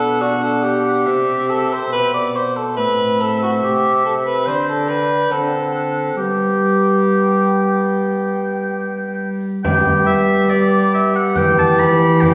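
Oboe, cor anglais, bassoon and cello open together in a stately, festive renaissance-style consort dance in a straight four, the oboe's clear, lightly vibrato-tinged melody riding high over the cor anglais's up-front second line, the bassoon's mellow accompaniment and the cello's dark, gut-string bass. At 9.6 seconds a deep, distant frame drum joins as the opening material returns, and the chords move from Bm through C, Am, Dsus4 and D7 to settle on G before an Em near the close. A reverberant recital hall surrounds this brief section cut from a longer piece.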